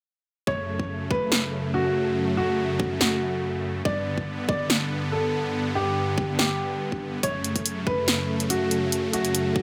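A half-time 4/4 groove at 142 BPM drives this aggressive, heavy wobble dubstep passage in F# phrygian, cut from a longer piece. A punchy electronic kick, layered and re-recorded in a large room with high-pass filtering on both the drum and the room sound, starts at 0.5 seconds, and a big-room dance kit adds hi-hat and an up-front snare from 1.3 seconds. Huge supersaw chords, detuned and bright with a moving notch, sustain across the low register and pump against the sidechain. Above them a boxy grand piano carries the melody between F#4 and D5, trailed by tape echo. The harmony moves from F#m to G and back to F#m, all under a light reverb until the passage ends at 9.6 seconds.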